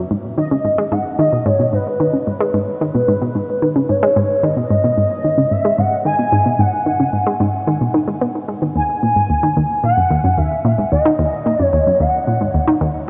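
A vast, wet reverb with a 7.5-second tail surrounds this short ambient passage, giving it a hypnotic, cosmic atmosphere. At 111 BPM in a straight 4/4 in G# minor, an analog pluck opens the recording at 0.0 seconds, repeating a riff in the low-to-middle register that is round, nasal and bright, with fast attacks and short decays, shaped by chorus and delay. Almost immediately, at 0.4 seconds, an expressive portamento lead enters with a melody in a higher register, its soft-attack sawtooth tone smooth and mellow, sustained with vibrato and gliding between notes. That lead is coloured by ensemble chorus, a cassette-tape quality and delay, and both parts sit up front in the mix. The harmony rests on G# minor before moving to D# minor at 8.8 seconds, keeping the mood suspended and drifting.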